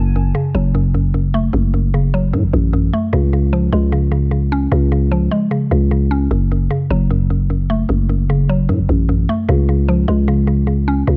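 A growling, buzzy 808-style bass with a fast attack and decaying tail sits up front, carrying the low end under this hard-hitting, eerie trap excerpt at 151 BPM in a half-time feel. A woody, round mallet-like synth pluck with a warbling, vintage FM character and chorus plays the accompaniment throughout, moving between F#m and C# in F# harmonic minor. The short clip is cut from a longer piece and has a studio ambience.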